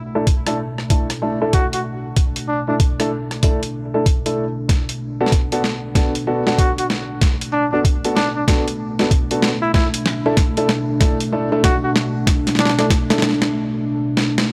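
A dark analog pad opens this gritty, funky glitch hop excerpt, its deep, detuned chords carrying sampler grit, chorus and sidechain pumping as a filter sweep runs across the whole passage. Moments later a dark grand piano adds mellow, intimate stabs with audible action noise, sitting up front with tape echo and a low-pass filter. A compressed, pitched-down sampler-style kit brings hi-hat, rim click and a high-tuned snare beside a thumpy electronic kick, both in a small room with a swung sixteenth-note feel. A jazz-style trumpet enters at 1.5 seconds with vibrato, scooped notes and a smooth top, then returns later as a punchy solo trailed by tape echo. The section builds steadily, with a drum fill from 4.7 seconds and a break at 13.5 seconds, all captured with a dry, hardware-driven rasp.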